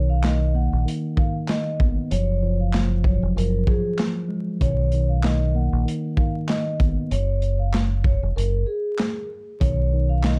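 Soulful and nostalgic, this boom-bap hip-hop excerpt opens with a mellow tine electric piano, treated with cassette-tape character, holding the chords beneath a ringing, metallic vibraphone melody played with soft mallets and trailed by digital delay. A deep, round dub bass sits up front, and a gritty, saturated breakbeat kit enters at 0.2 seconds with a tight kick, medium-tuned snare, hi-hat and handclaps. A break arrives at 8.4 seconds, all within a dark production dusted with vinyl crackle and little reverb.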